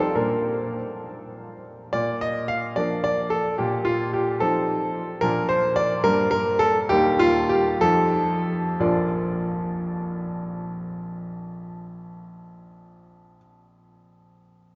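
A deep cathedral reverb with a 5.4-second tail surrounds this church or concert-hall recording, and its highs roll away above 7.6 kHz. Within that space, a polished, present baby grand piano plays a playful, elegant classical-period sonatina alone, in Bb major and a rubato 6/8 at roughly 58-74 BPM by the dotted quarter, ranging from Bb1 to F5. The harmony moves from Bb through F7 over a Bb bass, Gm, Eb and F7 back home to Bb, with the pace easing between 4.4 and 8.8 seconds in this brief excerpt from a longer piece.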